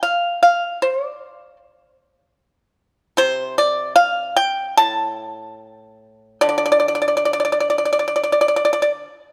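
Rubato at 63-78 BPM in 4/4, this brief fragment of Chinese traditional music in D yu mode features a solo pipa plucked with fingerpicks, its bright, dry, percussive tone placed up front by close, detailed microphones with light reverb as it ranges from A2 to A5 in a longing, contemplative mood for 9.1 seconds.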